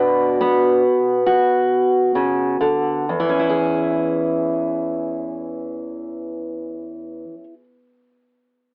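A fingerpicked steel-string acoustic guitar opens alone, full-bodied and up front, with finger squeak audible as it plays a gentle, nostalgic folk passage in E mixolydian. The tempo hovers between 62 and 73 BPM in a loose, rubato 4/4, slowing down over the first 3.1 seconds as the harmony rests on Bm. At 3.1 seconds the guitar moves to an E6 chord for a second phrase, its range stretching from E2 to B4. The recording carries light reverb and the worn, warbling character of old cassette tape, with pitch drift and an AM radio quality that deepens the sense of memory. This short piece, cut from a longer one, runs about 7.6 seconds.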